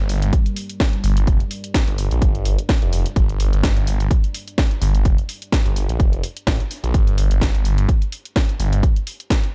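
A deep, moody pad and a phased, detuned saw bass open this aggressive, bouncy bass house fragment together, holding a single minor chord. The bass sits up front, thick and saturated with overdrive, its swirling phaser tone pumping through sidechain compression. Underneath, the pad is very quiet and full-bodied, a mellow layer of sustained chords with a slow attack, long release, chorus and its own reverb. The house kit arrives almost at once with a swung hi-hat and a cracking snare, while a punchy, layered electronic kick enters at 0.3 seconds and drives hard at the front of the mix. The drums carry a tape-warm, small-room character, and the overall production is dark and dry, with the bass dropping out at 8.8 seconds as the pad and drums run on to 9.5 seconds.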